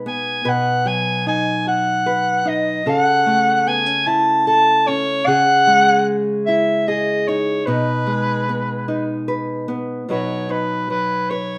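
A small, fingerpicked nylon-string guitar opens this gentle, pastoral acoustic folk excerpt in a slow 6/8 at 50 BPM, joined at 0.1 seconds by a warm, classical-style soprano saxophone with vibrato that sings the melody up front yet with a distant, roomy quality over chords moving from B through A/C#, C#madd9 and G#m/B to a closing Badd9 at 10.1 seconds, all set in a moderate studio reverb.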